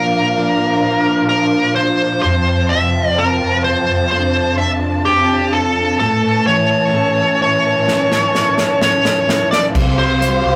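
Longing and melancholic, this pop ballad moves at a slow 64 BPM in a straight 4/4, in a short cut from a longer piece. A smooth, overdriven lead guitar sits up front carrying the melody, while a mellow tine electric piano, heard as if through its built-in speakers, supplies the accompaniment. A lush, distant string section holds sustained, bowed chords with expressive vibrato, and a slightly broken-up, compressed electric guitar picks arpeggios in the background through a harmonic tremolo. The harmony passes from Bb to F, then A, arriving on Csus4 at 9.7 seconds. A punchy, airy drum kit enters with a fill at 7.9 seconds, and a dark, round, foam-muted bass comes in on a low C at 9.8 seconds. The whole recording has the rough feel of a rehearsal room, with a wet small-room reverb and warm saturation.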